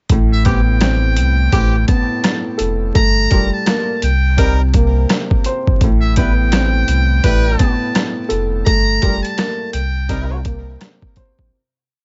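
A muted trumpet carries the hook here, its buzzy, thin tone sitting distant and roomy as it repeats a short, forceful jazz-style melody with scooped notes and light vibrato from 0.3 to 10.3 seconds. Underneath, this gritty, tough boom-bap hip-hop piece moves at 84 BPM in A minor with a swung sixteenth-note feel, driven by a compressed, pitched-down sampler-style drum kit that hits a thumpy kick and a medium-tuned snare layered with rim, sounding tape-warm and up front as if re-recorded in a small room. A deep, round sine sub bass loops its sliding line close to the front, while a dark, woody upright piano plays a patterned eighth-note arpeggio with a vintage cassette-tape character. A jazz horn section adds short stabs through a delay, and the chords cycle between Am9, Gm9 and Cm7. Vinyl crackle and a dull top end give the dry mix its dusty feel, and the whole hook fades out from 8.7 seconds to its close at 11.5.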